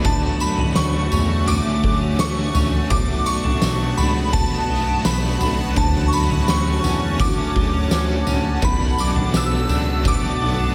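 A melancholic, hazy dream pop fragment features from its first moment an oversized, low-tuned drum kit, gritty and up front with a fat snare, punchy kick, tambourine and toms. Beneath it, also from the start, sit a glossy chorused synth bass, an ethereal ambient pad with octave-up shimmer and built-in reverb, and two guitars in the background: clean, twangy arpeggios through lush chorus and digital delay, and a biting overdriven part with tremolo and analog chorus. From 0.1 s a dreamy FM bell with a halo carries the melody high above, its detuned, decaying tone spread by ensemble chorus and digital delay, while the harmony alternates between Dmaj7 and Bm7 in a small room with light reverb and the drums stop at 10.2 s.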